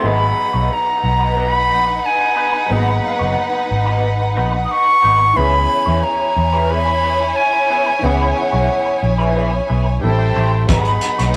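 A rough rehearsal-room recording with tube saturation and a small room's moderate reverb gives this short cut from a longer piece a hazy, lived-in sound. The style is lush 1970s soul in G# minor at 90 BPM in a straight 4/4, with a bittersweet, silky mood as the harmony moves from G#m7 to C#m7 at 5.4 seconds, touches Am7 and settles back on G#m7. A breathy, close-miked silver flute carries the melody up front in a straight, tongued tone, while a distant violin section adds a bowed second line with expressive vibrato. Beneath them, an intimate concert grand piano with audible action noise and long sustain plays the accompaniment, an electric guitar through a small old amp works a slightly broken-up, picked riff with wah, and a dark, round, foam-muted fingered bass sits prominently. At 10.7 seconds a cloth-damped, thuddy drum kit enters with a tight kick and hi-hat, its muffled, gritty tone rolled off at the top, alongside high-tuned, thick-skinned congas that are barely audible.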